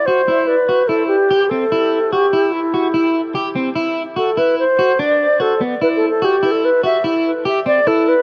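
A driving 5/4 pulse underpins this intricate progressive instrumental excerpt, where a bright, reedy alto flute with soft-attack vibrato carries the melody through dub echo while an electric guitar at the edge of break-up plays dark, fingered arpeggios bathed in lush chorus, both up front in an echo-heavy chamber reverb as the harmony moves from a rootless C6 to D7 at 3.8 seconds before dropping out of chords at 5.8 seconds.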